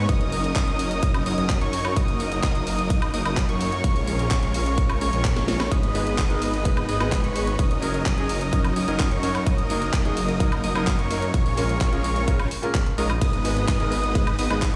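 Festival progressive house at 128 BPM in F# major, anthemic and uplifting, where a huge, euphoric supersaw riff and a high, dark-edged unison arpeggio pump with sidechain and tape echo over a thick, menacing detuned saw bass, an up-front punchy kick and a house kit with cracking snare, claps, hi-hat, ride and woodblock, a drum fill at 5.4 seconds bringing in a brilliant grand piano at 5.9 seconds as chords cycle F#6, A#m7 and G#m, all heard through a big system in a bare stone room.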